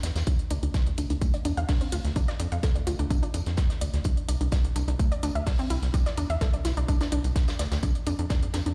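Melodic techno with a driving, melancholic mood, this short cut moves from Dm to C as a punchy, layered electronic kick enters at 0.3 s, up front beside a tight sawtooth-and-square sequencer bass that pumps with sidechain. Above them, a round, detuned analog pluck plays bright arpeggios colored by chorus, cassette tape and delay. A saturated, gritty breakbeat kit of hi-hat, snare and tambourine with a rolled-off top sits low alongside a tape-warm electronic hi-hat, all heard through a big sound system in a bare stone room.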